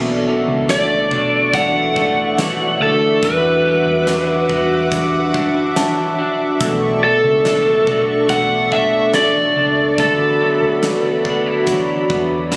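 An overdriven slide guitar, played with fingerpicks and sent through digital delay, carries the melody up front from 0.7 s over a smooth, soft-attack sawtooth analog pad holding sustained chords with chorus in this melancholic, hazy dream pop excerpt. Two slightly broken-up electric guitars sit in the background, one twangy with tremolo and analog chorus, the other compressed and arpeggiating through lush chorus and digital delay, while a dark, foam-muted picked bass stays round and amped. A huge arena drum kit with a fat snare, punchy kick, hi-hat and tambourine enters at 0.7 s, and a delicate, bell-like celesta with digital delay plays in the background until 9.8 s, the mix framed by light reverb, small room ambience and compression.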